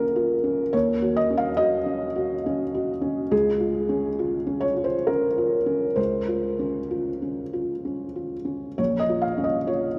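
Neoclassical minimalist piano in Bb minor, this wistful, intimate fragment drifts in 3/4 at roughly 63-70 BPM with a loose, rubato feel. A felt-muted upright piano plays alone for the full 10 seconds, ranging from deep Bb1 bass up to F5. Its tone is soft and mellow, with short sustain and audible action noise keeping it close and natural. The instrument sits up front, yet a long, wet cathedral reverb of 5.3 seconds surrounds it with the resonance of a church or concert hall. The harmony moves from Bbm7 to Ebm7, settles on Bbm7/Db, and comes to rest on a plain Bbm chord at 8.8 seconds, all cut from a longer piece.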